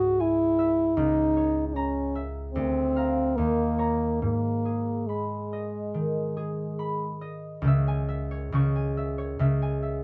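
Solemn and melancholic, this fragment of a romantic classical duo moves with a rubato feel in four. A warm French horn sings the solo melody up front, while a ringing, fingerpicked concert harp accompanies across a broad register under light reverb. The horn falls silent at 7.2 seconds, leaving the harp alone for the final passage that begins at 7.6 seconds.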